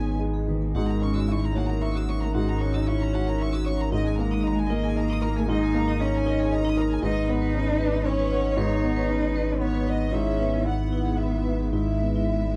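A felt-muted upright piano opens this melancholic, reflective neoclassical piece alongside a chamber violin section, a lone cello, a sustained pad and a deep sub bass. The piece moves in 3/4 at 115 BPM with a rubato feel. The piano's soft, mellow, intimate accompaniment carries a vintage character. The violin section sings the melody with rich, even vibrato, while the cello's second line sounds distant and expressive, with vibrato and portamento. From 0.1 seconds a bright, metallic vibraphone struck with hard mallets plays ringing arpeggios, close-miked and dry but set in the background. Underneath, a very quiet, morphing wavetable pad holds chorused, detuned chords. A round, up-front sub bass sustains G#1 beneath harmonies that pass from G#m through F#7/G#, D#sus4/G#, Badd9/G# and E/G#, all within a dark, warm studio ambience in this fragment of a longer work.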